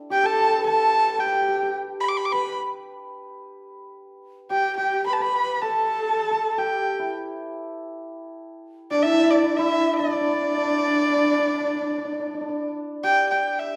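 This is Chinese traditional chamber music, pastoral and festive, moving at 109 BPM in a straight 4/4 in the D zhi mode, cut from a longer piece. The erhu carries the melody up front, and its dark, intimate tone is shaped by vibrato, portamento, a soft attack and an airy bow as it moves between D5 and D6. Beneath it, a hammered dulcimer rings with a mellow, shimmering sound from the very start. A horsehead fiddle adds a husky, expressive bowed line on horsehair strings, with its own vibrato and sliding pitch. A bright bamboo xiao sits in the background, its end-blown tone crisp at the attack with lifted highs. The xiao and horsehead fiddle stop at 12.7 seconds, leaving the erhu and dulcimer to finish at 13.8 seconds inside a wet recital hall reverb.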